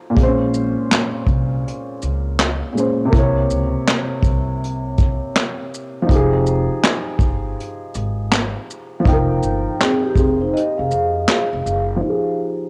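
A vintage brush drum kit sits up front in this melancholic, reflective lo-fi hip hop excerpt, its punchy kick, medium-tuned snare, hi-hat, shaker and handclaps carrying a natural studio-room sound at 81 BPM in 4/4 with a 16th-note swing. A dark upright piano, also up front, supplies the accompaniment in F minor through Bbm9, C7b9 and Fm9 chords; it is mellow and intimate, with audible action noise and a low-pass filter that smooths its vintage tone. Underneath, a pizzicato upright bass with gut strings gives a thumpy, woody low end. At 9.8 seconds a vibraphone with soft mallets enters as a second line, metallic and ringing with a slow motor vibrato, heard through a low-pass filter and analog delay in a boxy small room. A break arrives at 10.5 seconds, and once the other parts drop out the piano continues alone until 12.7 seconds, all captured as a dry home recording on cassette with little reverb.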